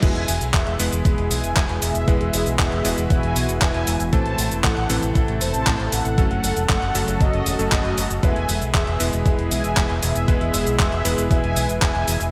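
A straight 4/4 italo disco groove at 117 BPM opens this playful, romantic excerpt in E major, with a thumpy electronic kick and a clean, up-front 12-bit drum machine of cabasa, handclaps, hi-hat and crash cymbal under gated reverb, while a fingered electric bass with an envelope filter and tube saturation holds the low end. Bright, clangy electric grand piano stabs and a lush, detuned unison pad entering at 0.7 seconds fill out a progression of E, Am and F#m, while a round, dark synth brass carries the melody through chorus, cassette-tape colour, delay and shimmer reverb. The bright 1980s-style digital production sits in a moderate hall reverb.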